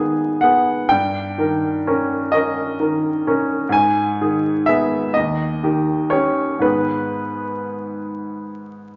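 A clear, natural-sounding baby grand piano plays alone and up front through this 9-second fragment of a romantic nocturne in G# minor, its short-sustained notes spanning D#2 to G#5 in a slow, rubato 12/8 at about 35-45 BPM. The yearning, melancholic harmony moves between G# minor and D#7, returning home to G# minor at 6.6 seconds. A wet recital hall reverb surrounds the playing, while vinyl crackle and a rolled-off top end lend the recording an aged patina.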